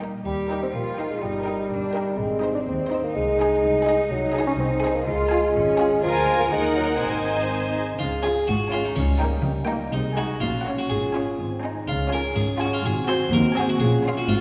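A mellow solo bassoon sits up front in this playful, whimsical film cue, carrying a mischievous, quirky accompaniment over chamber strings in a straight 2/4 until about 7.7 seconds. Around it, a violin section plays the melody softly in the background with light vibrato and a sul tasto tone. A second violin section adds a rich, smooth second line, and the violas fill in expressive accompaniment. Cellos and double basses anchor the low end, the basses dark with portamento, while a French horn section holds mellow sustained chords behind them and a triangle adds a brief bright touch near the start. At 8.0 seconds a full, brilliant harpsichord joins the melody up front, its plucked sound lending a quirky edge as the harmony wanders through shifting chords. The whole ensemble is heard from further back in a wet scoring-stage reverb, and the passage is cut from a longer piece.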